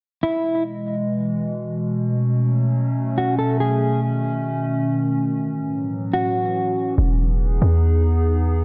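A clean, dark electric guitar melody opens this blissful, floating cloud-rap excerpt in free time at 0.2 seconds, soon joined at 0.6 seconds by a warbling, detuned, nostalgic tape-like pad sustaining chords from Emaj7 through A69, B9 and F#m7 with chorus and its own reverb, before a deep, boomy 808-style bass arrives up front at 7.0 seconds as the harmony returns to Emaj7, all set in a moderate, dark, warm-toned scoring-stage ambience in E major.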